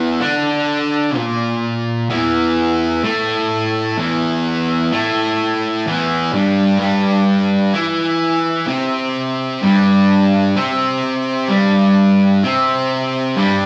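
Sludgy and hypnotic, this slow metal excerpt features a lone fuzz guitar, electric and double-tracked, sitting up front with warm, distorted picking that spans from E2 to E4. It settles on an E minor chord before shifting at 6.8 seconds to a rootless Am7 over G. A stony room reverb with a 1.2-second decay surrounds the part, giving it the feel of a band playing live in one space.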